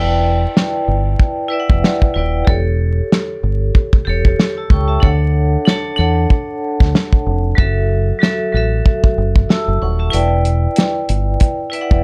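Boom-bap hip-hop in E dorian at 94 BPM, moody and tough, with a swung 16th-note feel and vinyl crackle under light reverb, cut from a longer piece. A round, dark fingered electric bass and a ringing, band-limited vibraphone struck with hard mallets and a slow motor vibrato carry the Em7, A7/E, Dmaj7 and F#m7 changes from the start. A tight, small-room soul drum kit with vintage 12-bit sampler grit comes in at 0.6 seconds, and its kick drops out from 10.1 to 11.4 seconds as the chords return to Em7.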